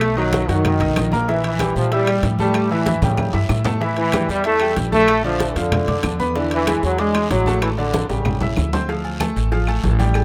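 Fiery and danceable, this salsa excerpt in D minor runs at 189 BPM, with a tight, up-front trombone section carrying the melody in a smooth-topped pop style with light vibrato until 8.7 seconds. A brilliant concert grand piano with deep bass and long sustain supplies the accompaniment, while a dark, thumpy upright bass plucks gut strings up front. Ringing low congas, metal-shell timbales with agogo bells, woody claves, a raspy guiro and very quiet high-tuned bongos with cowbell fill the percussion under a moderate plate reverb, with drum fills at 2.9 and 7.9 seconds before the chords resolve to D minor at 8.9 seconds.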